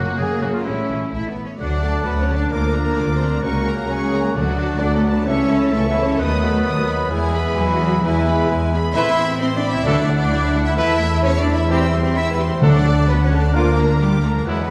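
Bathed in a wet scoring-stage reverb with a touch of small-room ambience, this cinematic excerpt from a heroic adventure score sounds soaring and triumphant, moving at 130 BPM in a straight 4/4 in D lydian. A clear, lush violin section carries the melody with smooth, even vibrato, while a second violin section with a soft attack and expressive, silky top plays a supporting line. A warm, close-miked oboe traces its own line in the background, and a focused viola section fills in accompaniment behind them. The low end is firm: an intense cello section and an up-front double bass section hold the bass, and calf-head timpani struck with medium mallets sound at the very start, around 4.4 seconds, and again from 9.9 seconds. A very quiet French horn section enters at 0.7 seconds to sustain chords, and after a brief opening the rest of the brass, along with the flute and clarinet, joins at 1.6 seconds: a vintage-toned trombone section sustains chords alongside the horns, a solo trumpet adds soft-edged stabs, and a pure, mellow flute group and a distant, roomy clarinet add further quiet lines. 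The harmony moves through colourful shifts such as A7, Bb/D, B/D#, Amadd9 and Esus4, lending the passage a bright, lifting sense of adventure.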